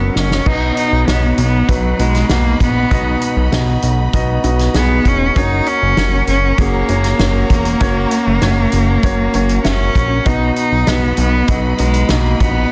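A short fill on a soft-mallet drum kit opens this excerpt of anthemic, hopeful piano-driven pop, moving at 98 BPM in a straight 4/4 in B major. From the start, a concert grand piano carries the accompaniment with an intimate, polished tone, its deep bass, short sustain and audible action noise giving it a close, present feel. Alongside it, a single bowed cello sings the melody up front, clear and slightly nasal and boxy, with smooth, even vibrato. A fat, detuned sawtooth bass with a plucky filter and fast attack sits forward in the low end, thick and evolving, while the mallet-struck kit, with its punchy kick, medium-tuned snare and rolled-off top, sounds distant and roomy. From 0.5 seconds a dark symphonic string section holds lush, expressive chords in the background as the harmony moves from B to F# and back to B at 10.3 seconds. Light reverb and a small room ambience surround the parts, and the master is dense and heavily limited in a modern style.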